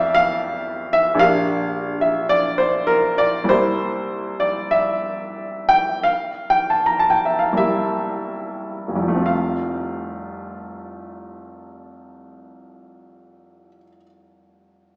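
A warm, smooth grand piano with a vintage tone and short sustain plays a serene, dreamy romantic nocturne in F major, sitting up front at a rubato 34 to 59 BPM in 4/4, slowing through the opening 9.3 seconds as F moves to Gm/Bb and C7 before returning to F, all bathed in wet recital hall reverb with a small-speaker sound in this brief cut from a longer piece.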